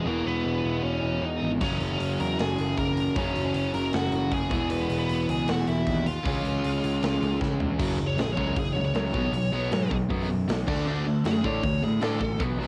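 A dark, high-gain lead guitar opens the piece over two picked overdriven riff guitars, one compressed and the other warm and set in the background, plus a round, punchy fuzz bass, before a big rock drum kit with bright cymbals and a medium-tuned snare enters at 1.6 seconds, driving this upbeat, rebellious punk rock in F# mixolydian at 156 BPM through a half-time opening, a drum fill and a lead guitar solo from 7.8 seconds, in a dry home recording on cassette.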